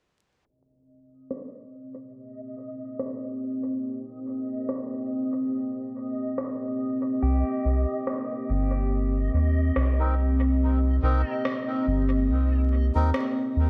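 An overdriven electronic rim click with dub echo sets a swung 71 BPM pulse in 4/4 from 1.3 s, anchoring a deep, hazy ambient dub excerpt in C minor where a moody, detuned pad holds a chorused Cm7 chord over a dreamy reversed granular swell, a round analog bass sits up front from 7.2 s alongside distant twangy pedal steel arpeggios through analog delay, and reedy, breathy melodica stabs drift in on dub echo at 10.0 s, all inside an echo-heavy, low-pass-filtered mix with vinyl crackle and a filter sweep.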